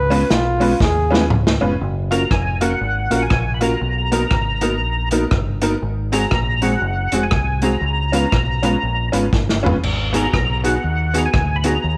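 A small room lends light reverb to this bouncy, cheerful ska excerpt in F# major, swinging at 120 BPM in 4/4. A clear, punchy trombone opens with a short solo over the band, joined by a drum fill from 0.8 s on a vintage kit whose dark cymbals, punchy kick and rolled-off top sit up front in a pumping room sound. From 2.1 s a fat tonewheel organ takes the melody high in its range, lightly overdriven with key click, chorus vibrato and a slow rotary speaker. Beneath it, a deep, round dub bass played with the fingers drives the low end, while a dark, clean electric guitar supplies accompaniment in the background. A detuned, jangly honky-tonk upright piano adds bright stabs, and another drum fill at 9.3 s leads toward the closing G#m7.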